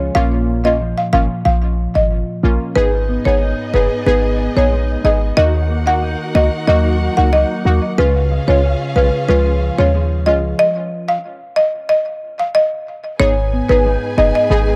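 A buzzing, woody marimba carries the melody up front in this tough, hypnotic dancehall excerpt at 92 BPM in G# dorian, over a punchy, tight 808-style bass, detuned sawtooth brass stabs with chorus and tape echo, and dark, clean electric guitar arpeggios through a phaser, while a bowed string section with vibrato and portamento enters at 2.8 s, the groove halts for a stop from 10.6 to 13.2 s, and a soft octave-layered synth lead appears only at 14.5 s in an echo-heavy, small-room mix.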